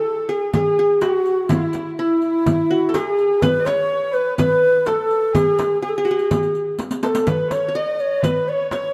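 A breathy, mellow low ney carries the melody in this short passage of Arabic maqam ensemble music, close-miked and up front with vibrato and soft attacks that give it a passionate, heartfelt feel. Beneath it, a qanun played with fingerpicks adds a bright-edged second line from its triple strings. A chamber violin section of bowed gut strings in period style doubles that supporting role with a nasal, reedy tone. Within the first second, a riq with dark jingles, a crisp metal-shell darbuka played with soft hands and a small frame drum struck firmly join in a steady, straight 4/4 pulse, and the drums break into a short fill from 6.8 to 7.3 seconds. A lush hall reverb surrounds the ensemble, though the overall mix has the rough feel of a home demo.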